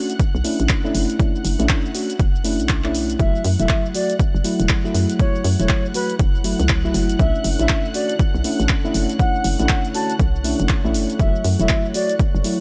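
Deep house at 120 BPM in 4/4 with a 16th-note swing, hypnotic and deep in mood, cut from a longer piece. Mellow FM electric piano stabs, round and full-bodied with chorus, tape echo and sidechain pumping, open the track over a muted, veiled violin section in the background, while a punchy, overdriven analog drum machine with handclaps, hi-hat and shaker is joined by the up-front kick. A hollow, bouncy FM bass with tube saturation and sidechain pumping settles under the harmony, which moves between Bm11 and F#m7. At 3.2 seconds an airy silver concert flute enters with a distant, unsteady melody and a chiffy, crisp attack, echoed on tape. From 5.1 seconds a moody, detuned sawtooth pad with a sub octave and a moving notch adds slow-attack sustained chords, softened by chorus and its own reverb. The mix is otherwise dry.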